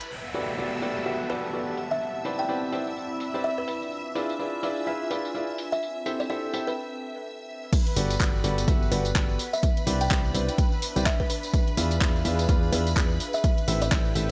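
Over shimmering, pumping string-machine violins and a filtered garage drum kit with bright hats, handclaps, crash and tambourine, a clear, woody upright piano riff with audible action noise, pumping and dub-echoed, leads this joyful piano house excerpt at 126 BPM in G major. It is surrounded by a breathy chorused pad, a falling electronic downlifter, and a buzzing, dub-echoed kalimba melody that enters at 1.3 seconds. A short break gives way to the drop at 7.7 seconds, where a background tambourine returns, an overdriven, punchy kick arrives, and a round, pumping FM bass enters at 8.0 seconds under the swung groove.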